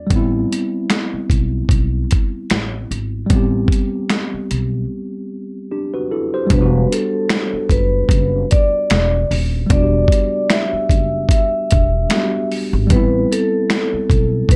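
Reflective and melancholic, this swung lo-fi hip hop piece in E minor moves at 75 BPM, with a worn, slightly out-of-tune tine electric piano carrying cassette-tape character over a woody pizzicato upright bass and a gritty, compressed sampler-style kit of thumpy kick, snaps, hi-hat and snare, before a break at 4.9 seconds gives way at 6.5 seconds to a ringing soft-mallet vibraphone melody with tape echo and slow motor vibrato, all set in a dry, close sound as the harmony drifts from Am9 to Em9 and back.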